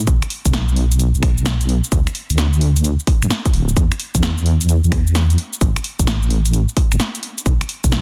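A deep, dark wobble bass with a detuned sawtooth edge and chorus sits up front from the start of this moody, late-night two-step UK garage excerpt in B minor at 130 BPM, swung on the sixteenths, joined at 0.1 seconds by a punchy, layered electronic kick and a tape-warm analog drum machine of snare, hi-hat, shaker and finger snaps, with a brief break at 7.0 seconds in a dry, dense, heavily limited mix.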